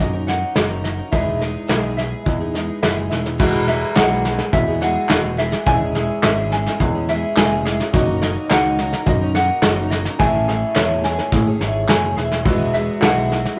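Indie folk with a hopeful glow, moving at a steady 106 BPM in 4/4 with a straight feel in E major, this excerpt is cut from a longer piece and built on a building arrangement. A picked twelve-string acoustic guitar rings out bright and shimmering with its octave-doubled strings, while a fingerpicked ukulele spins light arpeggios above it. Tucked in the background, a dark upright piano adds a woody, vintage, short-sustained accompaniment, and a picked electric bass sits round and direct underneath. A soft brush drum kit enters at 0.3 seconds, sitting up front with a tight kick, a medium-tuned snare and dark, rolled-off cymbals, and a very quiet, crisp group handclap joins at 4.0 seconds. The harmony drifts through colourful chords such as Emaj7, Eadd9, C#m/E, F#6 and Amaj7, and the whole recording has the rough, saturated character of a rehearsal room with a moderate reverb.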